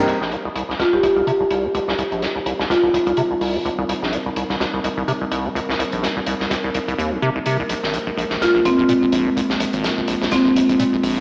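This raw, trippy acid house cut in C minor at 126 BPM, swung on the 16ths, opens on a dark, detuned analog pad with lush chorus holding a Cm7 chord under a filter sweep, beside a squelchy, resonant liquid acid bass riff sitting up front with overdrive and analog delay; an oversized low-tuned acoustic kit of hi-hat and fat, gritty snare in a bright stone room comes in at 0.1 seconds, and an airy marimba melody played with medium mallets floats through diffuse ambient delay from 0.8 seconds and again from 8.4 seconds, after the harmony has moved to Bb5, all set in a moderate plate reverb with a small-speaker tone.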